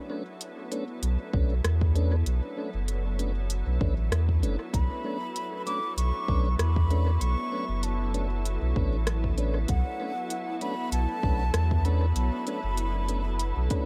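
Swung sixteenths in 4/4 set a loose, unhurried dub sway. A deep, tape-warm electronic kick and an overdriven electronic kit of smooth hi-hats and rim clicks carry it, with dub echo on the kit. A soft, round sub bass sits up front beneath a calm, organ-like pad that holds sustained chords with ensemble chorus, its own reverb and a gritty vintage sampler edge. A mellow, dark tonewheel organ adds stabs through a slow rotary speaker and dub echo, key click audible, all over a single chord. From 4.7 seconds an airy wooden flute with vibrato and a crisp attack floats a high melody trailed by dub echo, deepening the spacious, hazy mood of this fragment from a longer piece.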